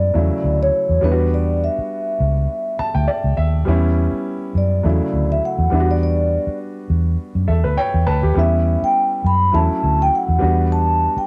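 A round, punchy muted electric bass sits up front in this lush 1970s-style soul passage, its dark, amped, foam-muted tone anchoring a bittersweet, cinematic mood at 102 BPM in 4/4 with a gentle sixteenth-note swing. Above it, a vibraphone played with soft mallets carries the melody in E dorian, its metallic, ringing voice mellow and warm, with a slow motor vibrato. A smooth grand piano with a vintage character and short sustain fills in the accompaniment, stepping forward with brief fills at 2.5 seconds and again at 7.2 seconds. The harmony moves between Dmaj9 and Em9, colored by an Em13 and an Em69 along the way. Light reverb frames the home cassette recording, with the vibraphone and piano carrying a tape texture, and the passage is cut from a longer piece.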